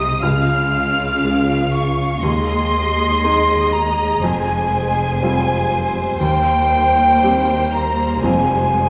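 A pure, straight-toned concert flute rings out most clearly in this bittersweet, sorrowful fragment of a cinematic film score in F minor, doubling the second line high above the orchestra with a clear, distant violin section. Beneath them, a warm, focused violin section carries the melody with lush, smooth-topped vibrato, moving slowly at 60 BPM in a rubato 4/4. A soft, felt-muted upright piano sits in the background with an intimate, mellow touch, short sustain and audible action noise. It shares the accompaniment with a rich, even viola section. Rich cello and expressive double bass sections anchor the bass, and a wet recital-hall reverb gives the whole ensemble a church-like or concert-hall space. The harmony moves from Db through Ebsus4, Fmadd9 and Cm7/Eb before settling back on Fmadd9 at 8.2 seconds.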